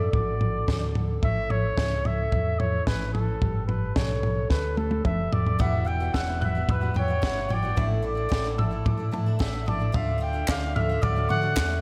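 Hopeful and nostalgic, this indie folk excerpt moves at 110 BPM in a straight 4/4, its arrangement building over a lush hall reverb that gives it a big arena sound. A mellow trumpet carries the melody from the start, distant and roomy with classical-style vibrato, touched by slapback echo and digital delay. Beneath it a dark fingerpicked steel-string acoustic guitar with slapback echo, a round, amped electric bass and a compact cocktail drum kit sit together, the kit up front with a tight kick and a high-tuned snare under a rolled-off top. A drum fill from 4.5 s leads into the second section at 5.6 s, where a boxy, swing-style picked acoustic guitar joins alongside a brilliant, slightly detuned upright piano playing arpeggios in the background, its woody action noise audible. Crisp group handclaps enter quietly at 10.5 s as the chords move from Dm to Dmaj7.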